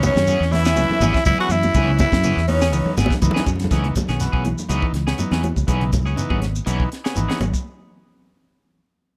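A dry, close 1970s-style studio sound with small-room ambience frames this hypnotic, intense afrobeat fragment in C# minor at 122 BPM, swung lightly on the sixteenths over a C#m7 chord. A raspy, gritty tenor saxophone carries the melody up front with scooped notes and vibrato, shadowed by a clear, distant alto saxophone line, and both horns drop out at 2.9 s, just before a drum fill at 3.0 s leads into the next section. Underneath, a tight funk kit with a high-tuned snare, a round fingered bass, ringing congas, a grainy shekere, a buzzy combo organ bathed in spring reverb, a slightly broken-up guitar playing arpeggios with subtle chorus, and a twangy second guitar adding tremolo-laden stabs keep the groove churning.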